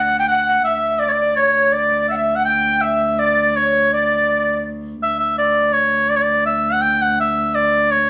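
Heard live in one room through a wet studio reverb, this rustic, festive medieval dance fragment in 3/4 puts a clear, folk-style shawm melody with light vibrato up front, while a breathy, distant tenor recorder with a crisp, chiffy attack adds a second line until 4.6 s, both floating above a dark, woody drone on D2 from a single bowed, fretted viola da gamba that rings beneath.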